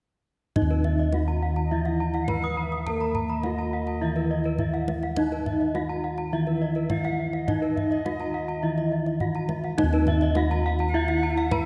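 In a straight 4/4 pulse, this brilliant, shimmering Balinese gamelan passage is cut from a longer piece. Up front, round bronze bossed gongs carry the bass with a beating tone, alongside a deep, close kendang. A dark, smooth bronze metallophone struck with a horn mallet takes the melody, its paired tuning producing shimmering beats. Two more horn-mallet metallophones ring out bright arpeggios above it, one sitting mid-forward. A mellow, soft accompaniment metallophone with padded disc mallets sits dry and close-miked in the background until 9.8 seconds, while an airy, expressive alto recorder enters at 1.6 seconds with a second line full of vibrato, tongued chiff and wood tone, all bathed in a wet concert hall reverb.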